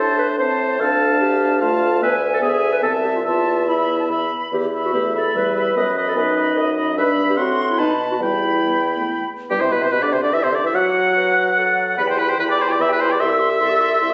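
A stormy, restless classical-period wind quintet movement in quick 3/4 at 146 BPM, played with rubato and settling into E minor from 4.5 s, opens with an airy, vibrato-touched flute melody over a clear oboe second line set up front, a vintage-toned clarinet and a mellow, distant French horn in accompaniment, and a roomy bassoon bass, all heard through a dull, phone-captured room sound with moderate stage reverb in this passage cut from a longer piece.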